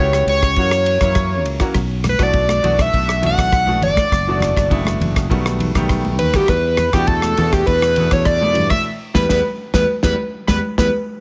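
A straight 4/4 groove at 101 BPM drives this nocturnal, intense electric jazz fusion cut in E dorian, with a damped 70s drum kit up front on tight kick, medium-tuned snare, rim click and ride, while high-tuned congas with hard hands join from 2.0 seconds in the background and a growly fretless bass sustains underneath. A gritty, screaming overdriven synth lead carries the melody with saturated sawtooth and square-wave tone, a filter sweep and vibrato, over brilliant baby grand piano accompaniment whose action noise can be heard. The chords move from C#m7b5 and F#7 through Bm7 and B7b13 to Em7 in a small room with light reverb, and the band accents together from 8.8 seconds before a drum fill at 10.6 seconds.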